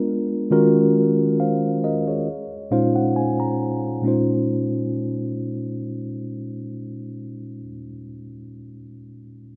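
A mellow, clean tine electric piano sits up front in this introspective, late-night R&B fragment with a gentle swing, voicing extended chords as accompaniment and slipping in a brief fill from 2.3 to 4.0 seconds, all bathed in a lush hall reverb within a rough home-demo mix cut from a longer piece.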